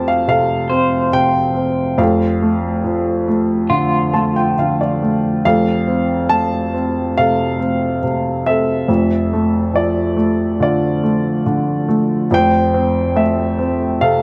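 A baby grand piano carries the melody up front, its intimate, natural tone close enough that the action noise of the keys can be heard as it ranges from deep bass notes to bright upper lines. This is an acoustic folk-pop ballad in F major at a slow 70 BPM in straight 4/4, with a hopeful, nostalgic mood. Alongside it, an electric guitar through a small old amp plays arpeggios in a dark, slightly broken-up, lo-fi voice with tremolo, dropping out at 5.8 seconds and leaving the piano on its own. The piano adds a short fill at 3.7 seconds just before the second pass through the same section, while the harmony moves gently between Fadd9, Dm/F and F. Light reverb gives the short cut, taken from a longer piece, a soft sense of space, and the instruments sit tuned slightly below standard pitch at A4 = 438 Hz.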